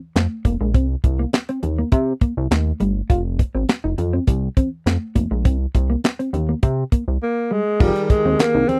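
Early-eighties boogie funk at 102 BPM in F minor, this slick, funky clip is built on a tight, dry drum kit with bright cymbals and handclaps, a glossy chorused synth bass up front, a dark, clean guitar riff bathed in lush chorus, and very quiet, high-tuned congas, moving from Fm through Cm7 and F5 to a C7 with the third omitted. At 7.2 s a breathy, close-miked alto saxophone enters with vibrato, and at 7.8 s a barky, overdriven tine electric piano with fast tremolo joins in the background on an Fm11 chord. The sound is close and dry, in the manner of a 1970s studio, with little reverb.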